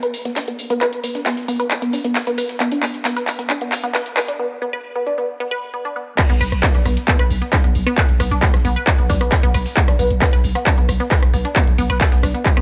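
Hypnotic and relentless, this short cut of driving peak-time techno runs at 134 BPM in a straight 4/4, set in B minor with tuning a touch below standard pitch. A squelchy, resonant blip pluck carries the riff between B3 and B4 from the start, coloured by phaser, tube saturation, analog delay and sidechain pumping, while a filter sweep rides a synth arpeggio sound through the opening 6.2 seconds of build-up. Alongside it plays an up-front techno kit of crash, handclaps, rim clicks and metallic, pumping hi-hats, and a drum fill runs until it gives way to a break at 4.4 seconds. A very quiet, gritty breakbeat layer of hat, snare and tambourine sits far beneath, re-recorded in a large room. The drop lands at 6.2 seconds, when a distorted, layered electronic kick pushes forward and a growling, buzzy 808-style bass on B1 enters under a low-pass filter and its own sidechain pumping. The overall sound is dry and lo-fi, with cassette-tape grit, a high-pass filter and a light digital ambience.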